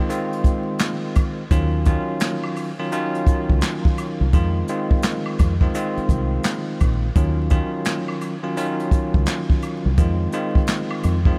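A light studio reverb and a bed of vinyl crackle frame this reflective, dark boom-bap hip-hop excerpt, cut from a longer piece and set at 85 BPM in 4/4 with a 63% swing on the sixteenths, in Eb dorian tuned to A4 = 437 Hz. A bell-like, barky tine electric piano sits up front from the start, its clean, direct tone shaped by high-pass and low-pass filtering as it comps between Fm7 and Ebm9 in the range from Eb3 to F4. A jazz brush drum kit, heard acoustic in a small room, supplies kick, medium-tuned snare, hi-hat and handclaps, with the boomy kick and brushed strokes placed close. The opening 1.5 seconds form a break before a deep dub fingered electric bass enters at 1.5 s, round and foam-muted, amped yet direct, moving between Bb1 and F2. Far in the background, a vintage, band-limited tube shaker and woodblock add a faint acoustic layer with a group handclap.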